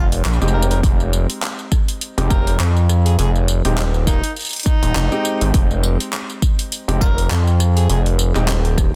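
This funky, swaggering glitch hop excerpt in F minor opens at 0.0 s with an amplified, overdriven harmonica playing a jazz-style melody full of tongue slaps, scooped notes and light vibrato, trailed by dub echo. Beneath it sits a gritty, saturated sawtooth synth bass with oscillator sync and a resonant filter pluck, placed up front. A pop drum kit of handclaps, rim clicks, tambourine and warm hi-hats enters at 0.1 s. Clear, short-sustain concert grand piano stabs arrive at 0.4 s with sidechain pumping and dub echo, and a punchy electronic kick lands at 0.8 s, all on a single Fm7 chord at 102 BPM with a light 16th-note swing and a dense, heavily limited modern master.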